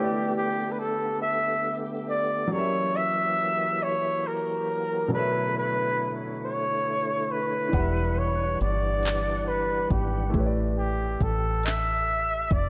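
A breathy flugelhorn leads this sultry, yearning slow R&B excerpt in 6/8 at 46 BPM, singing an intimate, whispered melody with vibrato and scooped notes through analog delay, over a baby grand piano and a lightly overdriven tonewheel organ with key click, chorus vibrato and slow rotary speaker, which stops at 10.3 s. At 7.7 s a round, foam-muted dub bass and a produced drum kit of handclaps, metallic hi-hat and soft kick enter, the kit carrying its own overdrive. Chords such as F#7b9 and Bm11 float in a dreamy plate-reverb haze, with lossy compression artefacts.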